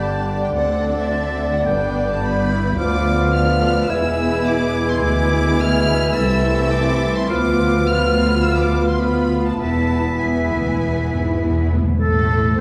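A rich, vibrato-laden violin section carries the melody from the start of this quick, dramatic and stormy classical-period orchestral excerpt at 106 BPM, with a focused second violin line, a pure distant flute, clarinet, bassoon, a lush viola section with portamento, a clear cello section and a smooth-topped double bass section beneath, mellow French horns holding chords from 0.6 seconds, round soft-mallet timpani entering at 9.6 seconds, and a close, up-front oboe appearing at 12.0 seconds, all set in a wet recital-hall reverb heard from further back in the room.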